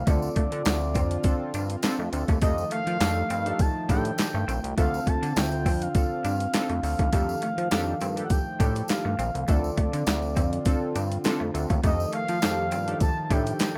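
A gritty, overdriven sampler-style drum kit sits up front with a thumpy kick, medium-tuned snare, hi-hat and handclaps, driving this funky, late-night slice of early-eighties boogie funk cut from a longer piece. Alongside it, a glossy, nasal synth bass with a moving notch and a filter pluck anchors the alternating Dm7 and F13 chords, while a punchy polysynth comp with filter sweeps and a shimmering, evolving pulse-width pad with ring modulation and a long release fill out the harmony. A smooth, dark synth lead with vibrato and slapback echo carries the melody, and a twangy, clean electric guitar riff and a jingly, distant tambourine sit in the background of this rough home demo mix with digital ambience.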